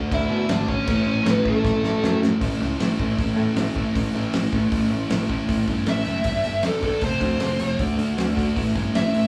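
Upbeat and energetic, this punk rock passage, cut from a longer piece, drives along at 156 BPM in a straight 4/4, centred on A major. A sludgy, double-tracked distorted guitar sits up front, pounding out an overdriven, picked riff, while a picked electric bass adds a growly, direct low end beneath it. The loose indie drum kit sounds acoustic and roomy, with a fat snare, a tight kick, hi-hat, crash cymbal and a rolled-off top, and it plays a fill starting at 1.6 seconds. A bluesy, dark lead guitar, also up front and distorted, carries a melody at the opening, drops out after 2.2 seconds, and returns at 5.9 seconds for a solo. The chords move from D to A and later through G, F, D and back to A. The band sounds like it is playing live together in one small room, with a moderate large studio reverb around it.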